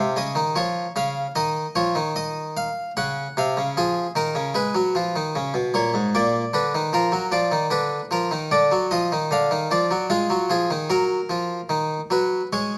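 A solo Italian-style harpsichord, plucked, brilliant and up front with octave strings, carries this grave, solemn baroque-style suite movement at a rubato 75 BPM in 4/4, settling into E-flat minor from 4.5 s through a chord path from B-flat minor to a closing E-flat minor, captured by close, detailed microphones in a moderate recital-hall reverb as a fragment cut from a longer piece.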